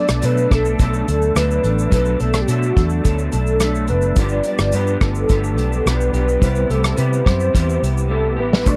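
A straight, steady 4/4 groove comes from an unplugged acoustic drum kit played with bundle sticks, with a punchy kick, medium-tuned snare, rim click, hi-hat and shaker sitting up front, and a short drum fill arriving at 8.1 seconds. Beneath it, a vintage foam-muted electric bass gives a dark, rounded low end, entering with the drums at 0.1 seconds. This lonely, wistful piece of indie bedroom pop moves through Bm7, G7 and Cmaj7, with an electric guitar through a small old amp adding slightly broken-up, lo-fi, compressed accompaniment that wavers with ensemble chorus and a warbly pitch drift. A reedy electric piano with fast tremolo murmurs very quietly through its built-in speakers. On top, a soft, octave-layered synth lead blends triangle and sine tones with a sub octave, its sustained melody colored by vibrato, analog chorus and tape echo. The sound is dry and close, like a 1970s-style studio with light reverb, and the passage is cut from a longer piece.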